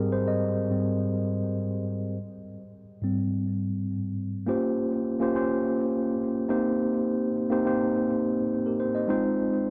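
Soul in a straight 4/4 at 104 BPM, this short cut from a longer piece carries a silky, bittersweet mood and is tuned slightly flat to A4 = 436 Hz. A mellow, clean tine electric piano plays alone throughout, sitting direct and up front with a touch of tape echo as it moves from Abmaj7 through Bbm69 and Cm7 to Fm7, its phrasing shifting into a new passage at 4.5 seconds. The close, dry 1970s-style studio sound holds a moderate booth ambience.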